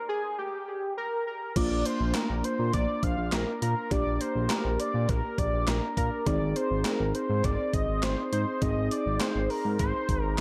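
A straight 4/4 pulse at 102 BPM drives this melancholic, nocturnal synth-pop fragment. A bold, bright octave-doubled sawtooth lead with detuned vibrato, chorus and analog delay plays alone over a rootless Eb, until the gated 80s drum machine, smooth up-front synth bass and muted, felt-like dark keys enter together at 1.6 s on Bb. The drums bring a thumpy kick, a gated-reverb snare, handclaps, hi-hat and crash with a tape-warm, sampler-style character, and the harmony moves to Ab at 6.3 s, all bathed in spring reverb and an echo-heavy mix.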